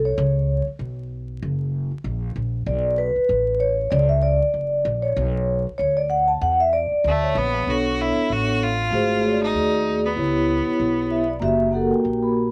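This jazz-hop cut from a longer piece sits at a mellow, cool 96 BPM in B minor with a swung 16th feel. A metallic, ringing vibraphone with soft mallets and slow motor vibrato takes a solo in plate reverb until 7.7 s, over a woody, thumpy pizzicato upright bass on gut strings, and later adds a fill at 10.8 s. A clear, biting bowed fiddle with light vibrato carries the melody from 7.1 s through 11.3 s, colored by cassette tape and plate reverb, and the whole has a home-cassette sound with vinyl crackle and a wet booth ambience.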